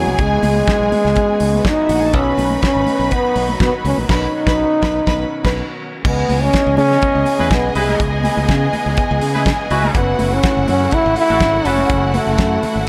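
Driving and danceable, this disco excerpt sets a breathy, whispered trombone up front carrying the melody, its scooped notes and soft attack giving the lead an intimate, jazz-style voice. Beneath it, a lush symphonic string section plays a second line while a studio string section holds sustained chords further back, both bowed with smooth vibrato. A bright, punchy fingered electric bass drives the low end against a damped 70s drum kit with a fat snare, tight kick and dark cymbals, and very quiet, high-tuned congas add soft-handed percussion. A band accent lands from 4.1 to 6.0 seconds, and at 7.4 seconds a tight vintage horn section enters in the background with tape-echoed stabs that stop at 11.8 seconds. The whole mix sits in a light reverb.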